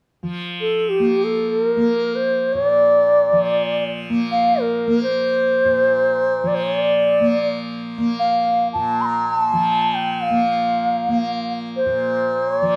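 A reverberant studio sound frames this meditative, radiant Indian classical excerpt in free time, in raga bilaval on Bb, where a softly plucked, buzzing tanpura drone shimmers from 0.2 seconds and a pure, mellow bamboo bansuri, up front in plate reverb with rolled-off highs, enters at 0.6 seconds with tongued notes and vibrato.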